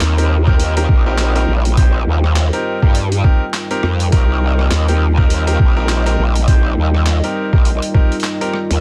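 Glitch hop with a swaggering, playful swing, cut from a longer piece, where a growling, wobbling bass with tube saturation sits up front beside a thumpy, overdriven kick that enters at 0.5 s, while gritty, pitched-down sampler drums with handclaps, hi-hat and rim click, brilliant piano stabs roughened by vintage 12-bit grit and dub echo, a moody analog pad, and a nostalgic, warbling tape-like pad in the background hover over a Cm7 chord in a dense, heavily limited mix dusted with vinyl crackle.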